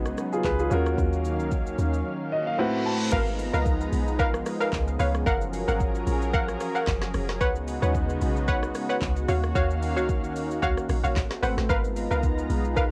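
Wrapped in light reverb with a lo-fi cassette character, this deep, late-night amapiano excerpt opens with a clear, polished baby grand piano over a thick, warbling detuned pad that pumps against the beat, a round, dark log drum bass and an electronic afro-pop kit with a woody snare, metallic hats and gritty sampler texture. The piano plays a fill, and a reverse cymbal rises into the drop at 3.1 seconds, where the piano stops. A crystalline, evolving wavetable pluck then joins the pad, bass and drums with chorused stabs and tape echo.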